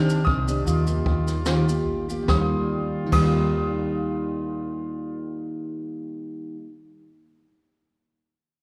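Acoustic pop with a carefree, sunny mood, this short excerpt moves in a relaxed 4/4 with a light swing and eases into a slowdown over its first 2.3 seconds. A dark, full-bodied fingerpicked jumbo acoustic guitar sits up front as the main accompaniment, while a bright, woody upright piano, slightly detuned, carries the melody high in its register. Underneath, a vintage foam-muted electric bass gives a round, amped low end, and a distant brass section adds soft-attack sustained chords in a classical style. A jazz kit played with brushes, with dark cymbals, a high-tuned snare, a punchy kick and shaker, plays until 3.4 seconds, its top end rolled off. The harmony moves from Cmadd9 to Ebadd9, and the whole recording sits in a wet concert-hall reverb that gives it a spacious, church-like glow.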